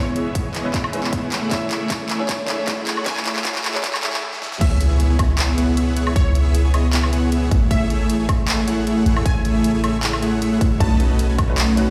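At 155 BPM in a half-time 4/4 feel, this dreamy, lush future bass excerpt in C# minor opens with a build-up carrying a drum fill, a filter sweep on the huge, thick supersaw riff and a very quiet riser, pausing briefly before the drop lands at 4.6 seconds with an impact while the big-room kit's huge snare, handclaps, hi-hat, crash, woodblock and a punchy layered electronic kick drive on. Beneath them a deep, boomy 808-style bass and the up-front, sidechain-pumped supersaw fill the low and middle, while a faint, breathy pad sustains chords through C#m7, Amaj7 and B9 and a bright, detuned unison pluck with phaser carries the melody until 11.0 seconds. A clear, worn grand piano sits in the background with pumping and dub echo, playing through the build and returning at 10.8 seconds, all set in light digital ambience and large studio reverb.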